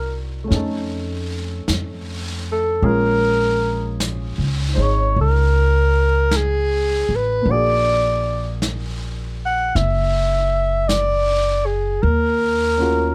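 Swung eighths at a slow 52 BPM carry this intimate, wistful jazz ballad excerpt, where a breathy, whispered alto saxophone with light vibrato and a soft subtone sings up front over a natural-toned grand piano, a woody pizzicato upright bass and a vintage brush kit with a rolled-off top that joins at 0.5 seconds, heard in a dry, close and detailed recording as the harmony moves from Cm7b5 through Bbm7 to Ebm7.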